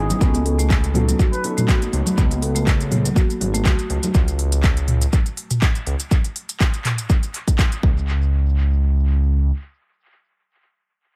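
Afro house at 122 BPM with a swung 16th feel, this earthy, hypnotic excerpt drops straight in on a B7 chord, with a punchy electronic kick up front and a detuned, sawtooth-edged synth bass pumping under sidechain until 9.5 s. A plunger-muted trumpet breathes a distant wah-wah jazz line through dub echo for the opening 1.4 s, while woody soft-mallet marimba arpeggios and dark, boxy felt-muted piano stabs pulse with sidechain pumping and echo. Tape-echoed afro-pop drums with handclaps, smooth hi-hat, shaker and toms, along with bright, high-tuned congas in the background, fill out a small, echo-heavy room.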